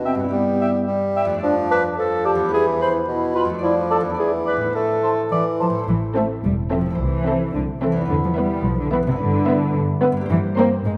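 A wet scoring-stage reverb gives this playful, whimsical film cue a sneaky, quirky air in a straight two-beat metre. A fingerpicked concert harp rings through the whole fragment with warm arpeggios, while in the opening half a clear, up-front bassoon with soft attack carries the accompaniment beneath mellow clarinet, a lightly vibrato cor anglais in the background and a distant, airy silver flute with crisp, straight tone, all three tracing second lines. Around 5.3 s a lush, up-front muted cello section takes over the bass, and by 5.9 s the woodwinds have given way to a darker, veiled con sordino string body with a close double bass section underneath. Muted violins float a melody and a second line in the background over a smooth-topped viola accompaniment, each lightly touched with vibrato. The harmony wanders through inverted minor chords and dominant sevenths, pausing on a C7/G as the fragment breaks off at 11.0 s.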